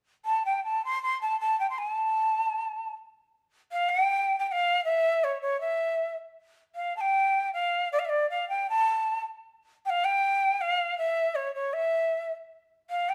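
A stone room lends a moderate reverb to this live, single-room recording, giving the sound an earthy, enclosed resonance. The music is Andean folk at 78 BPM in 2/4 with a straight feel, tuned to A4 = 439 Hz, and the mood is melancholic. A breathy cane quena carries everything as the solo voice, sounding from 0.3 s to 13.1 s and sitting up front in the mix. Its end-blown tone is soft in attack and touched with vibrato, ranging from C#5 to C6. A brief opening phrase gives way at 3.3 s to a longer second section, and the clip is cut from a longer piece.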